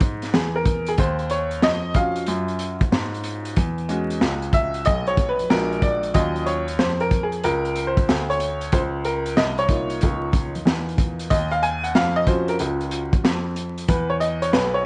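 A woody, slightly detuned upright piano with a vintage character carries the lead in this cool, nocturnal jazz-hop fragment, soloing from the start and holding its chords with long sustain over minor-ninth harmony. Beneath it, a dark baby grand piano plays the bass line in its low register, mellow and intimate, with its action noise audible up close. A crunchy breakbeat kit sits up front, its tight kick, high-tuned snare and hi-hat rolling along with a gentle swing, saturated and gritty in a small room with a rolled-off top. The mix has light studio reverb, a soft haze of vinyl crackle and a dulled upper end. The passage is cut from a longer piece, and all three parts run nearly its full 14.9 seconds.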